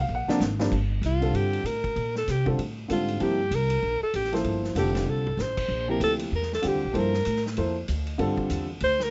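A dark, slightly detuned upright piano with audible action noise and a thumpy, woody upright bass open this intense, searching modal jazz excerpt on an altered dominant chord, as a gritty, saturated vintage drum kit with dark cymbals enters with a fill. The alto saxophone comes in up front at 1.1 seconds for a swinging solo over a minor eleventh chord, its smooth tone shaded with vibrato and scooped notes, and the drums add another fill at 5.1 seconds. The rough home demo mix has little reverb and a muffled top end.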